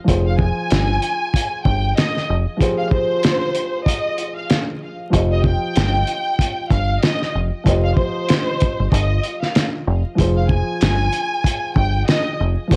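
A home-cassette sound with vinyl crackle and light reverb frames this reflective, gritty boom-bap hip-hop excerpt in F minor, moving at 95 BPM in 4/4 with a swung sixteenth-note feel. A muffled, cloth-damped drum kit of kick, fat snare and hi-hat sits up front beside a deep, round fingered electric bass with transformer saturation, while a dark, woody, slightly detuned upright piano plays boxy chords under tape and filtering, shifting from Fmadd9 to Cm/F and back. From 0.3 seconds a rich, bowed violin section carries the melody with vibrato and tape echo until 12.4 seconds.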